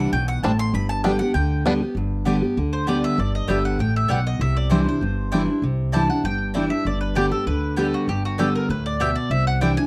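Bluegrass with a joyful, rustic feel opens on a mandolin solo of short stabs over a full-bodied, up-front picked guitar and a thumpy pizzicato upright bass, while a twangy banjo adds brief arpeggios between 0.4 and 1.7 seconds, before a second, woody mandolin with slapback echo takes the melody from 2.7 seconds in this dry, close, 1970s-style small-room recording cut from a longer piece.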